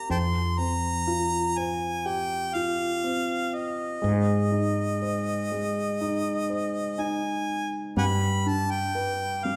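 In a slow, straight 4/4, this reflective, heartbroken acoustic folk-pop ballad is cut from a longer piece. A clear, close-miked harmonica carries the melody up front in a jazz-style solo, with light vibrato, scooped notes and tongue slaps. An intimate upright piano with audible action noise and long sustain accompanies through Fsus2, Ab and G, over a growly, round fretless electric bass, all set in the wet reverb of a church or concert hall.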